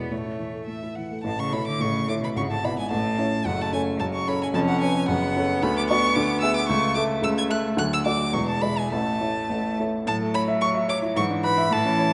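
A clear, close violin with smooth vibrato carries the melody up front in this spirited, graceful classical-period piano trio movement in A major, played quickly at 103-114 BPM in 2/4 with a rubato feel, while a bowed cello sings a second line beneath and a warm baby grand piano supplies natural accompaniment through chords such as A, F#m and E7, all bathed in the wet reverb of a scoring stage over this 12.1-second excerpt cut from a longer piece.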